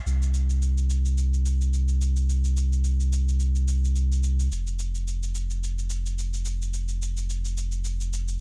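Sunset chillout with a relaxed, warm mood, moving at 108 BPM in 4/4 with a light swing on the sixteenths, cut from a longer piece. A deep, round sine sub bass with a fast attack and sustained notes sits up front with tube saturation, while a distant, roomy acoustic cabasa with a rolled-off top plays quietly behind it, both running from 0.1 to 8.4 seconds. The sound is dry, with the character of cassette tape.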